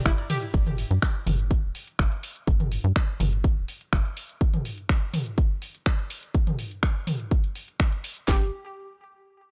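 A dry, gritty recording with transformer saturation and a digital ambience frames this hypnotic, driving melodic techno cut from a longer piece, moving at 124 BPM in a straight 4/4 over Dsus4 and G5 before the chords drop out at 4.4 seconds. Two up-front, layered electronic house drum kits carry it, one with a punchy kick, cracking snare and handclaps, the other with finger snaps plus hi-hat, ride cymbal and toms that pump under sidechain, both re-recorded in a small room. A tight, nasal sawtooth-and-square sequencer bass with a filter pluck pumps from 0.1 to 4.0 seconds, while a round, bright analog pluck with ring modulation, chorus and tape echo flickers briefly at the start and returns with the bass at 8.3 seconds.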